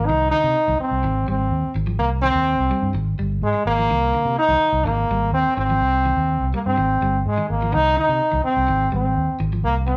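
Defiant and driving, this afrobeat excerpt moves at 126 BPM in a straight 4/4, cycling between C minor and A-flat major colors such as Cmadd9 and Abmaj7 throughout its 10 seconds. A bright trombone carries the solo melody up front with scooped, pop-style notes and a roomy, distant quality, while a round, punchy fingered electric bass sits forward with an amped tone. In the background, a clean, dark electric guitar plays picked arpeggios, all captured as a band playing live in one room with light reverb.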